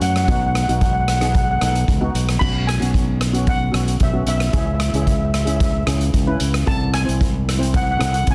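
Densely limited with light reverb, this sunny, carefree calypso fragment sets a shimmering, airy lead steel pan, struck with medium rubber sticks, singing a high melody over a smooth, dark double-seconds pan accompaniment, while an up-front overdriven fingered electric bass and a polished, big-room street-band drum kit with boomy kick, crash, hi-hat and rim clicks play beneath as the harmony moves from B through Bsus2 and C#m to Am/C.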